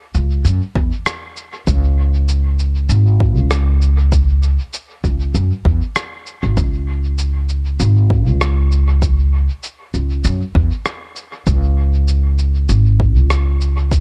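Spacious and hazy, this ambient dub excerpt moves at 98 BPM in 4/4 with a gentle 16th-note swing in C# minor, steeped in an echo-heavy digital ambience. A woody, thumpy pizzicato upright bass with steel strings sits up front from the start, alongside a muffled, pitched-down cabasa and rim click bathed in dub echo and small room ambience. At 0.8 seconds a deep, layered electronic kick drum enters, its overdriven punch giving the low end a gritty weight.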